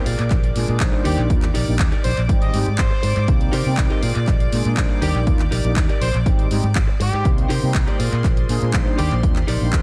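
A funky, groovy slice of filtered disco house at 121 BPM opens on a very quiet electronic sub drop beneath mellow, chorused synth brass with a phaser, dark, floating sul tasto strings held in the background, and a clean, direct-recorded electric guitar riff roughened by 12-bit sampler grit and dub echo, before a round, amped fingered bass and a tape-warm house kit of handclaps and echoing hi-hats arrive, a punchy electronic kick lands at 0.3 seconds, and a brilliant, tight horn section carries the melody from 1.1 seconds over a looping Ebmaj7–Abmaj7–Cm7–Bb7 progression, with sidechain pumping on the brass, strings, guitar, bass, hats and horns in a dry, echo-heavy mix.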